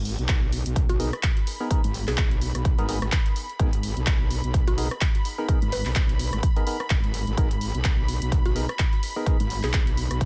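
Aggressive, gritty bass house driven by a metallic, distorted wobble bass with chorus and sidechain pumping, sitting up front beside a punchy layered kick and a big-room drum kit of handclaps, hi-hat and rim click, all swung on the sixteenths over a single G#madd9 chord. In the background, a woody, round mallet-like pluck carries the melody from 0.9 seconds with chorus and delay, while a hollow, nasal organ stab with chorus, delay and pumping adds percussive accents. A lush bowed string section with vibrato holds a single high note under the sidechain, and the whole short excerpt has a dry sound.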